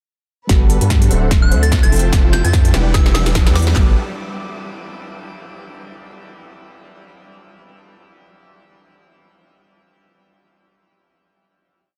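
A half-time 147 BPM future bass pulse with a 56% sixteenth swing drives this short, playful and bright piece in G major, where a punchy, tape-warm dance kit of kick, snare and handclaps leads a build from 0.5 s, joined by crisp hat rolls and a second snare layer, all over a saturated, deep sub bass in the dense, heavily limited mix. A huge, detuned supersaw riff carries cassette grit, pumping and a filter sweep through Gmaj9, D7, Fmaj7 and Em7, with a mellow tine electric piano, an earthy string pad and a round, very quiet pluck arpeggio alongside it. A soft FM synth bell with chorus and phaser adds short answering phrases from 1.4 s, a faint riser lifts the build, and at 3.8 s everything resolves on a final Gmaj9 chord in a dry, close sound.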